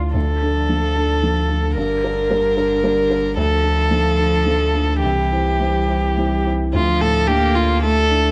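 Neoclassical piano and strings in D minor at a rubato 110 BPM in 3/4, this melancholic, longing excerpt sets a smooth, rich violin melody with vibrato up front over a clear bowed cello second line, a soft felt-muted upright piano accompaniment, a deep punchy sub bass, and a very quiet ethereal pad heard briefly at the start and again from 7.7 seconds, all in light studio reverb as the chords move from Dm through Gm and C back to Dm.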